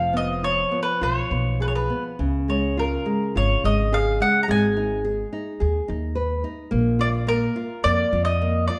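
Mournful and passionate, this short fado-style ballad moves with a rubato feel in four, and it is cut from a longer piece. A bright, picked mandolin carries the melody on its doubled strings, sitting up front with a woody edge. Beneath it, a warm nylon-string guitar fingerpicks a classical accompaniment, while a pizzicato upright bass on steel strings adds a dark low foundation. All three acoustic instruments play together throughout the roughly 8.8 seconds, moving through Fdim, Db, Abm and Bb5. A moderate recital-hall reverb places the trio in a natural, resonant room.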